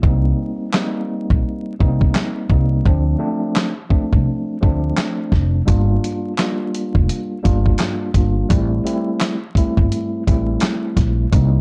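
A swung 85 BPM boom-bap hip-hop groove in 4/4, with a break through the first 5.7 seconds, sets a reflective yet tough mood as a dusty, compressed sampler-style kit of thumpy kick, medium-tuned snare, handclaps and hi-hat sits up front over woody, dark pizzicato upright bass and a mellow, clean tine electric piano, filtered and played through its built-in speakers, moving through Cm7, Dm7, Gm7 and Am7 in a dry, gritty recording laced with vinyl crackle.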